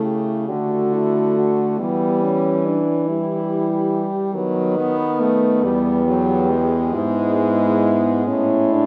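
A tender, rubato classical excerpt for horn quartet in a slow 6/8 at 46 BPM, where four French horns sound together from the start: a mellow, lightly vibrato melody between E4 and B4 over a vintage-toned second line, a warm accompaniment and a clear, roomy bass reaching down to E2, all heard from further back in a reverberant recital hall as the harmony moves from D through Em and B7/D# to E/G# and closes on A at 8.3 seconds.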